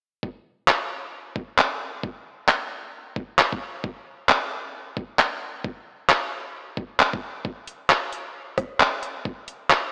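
UK garage in the two-step style, this moody, soulful excerpt swings its sixteenths over a 4/4 groove. A knocking, layered electronic kick sits low in the mix from 0.2 s, while an up-front garage kit of handclaps, rim clicks and metallic hats joins at 0.7 s, both parts carrying a tape-warm, produced edge. A lush hall reverb surrounds the beat, and the whole recording is filtered through an AM radio tone.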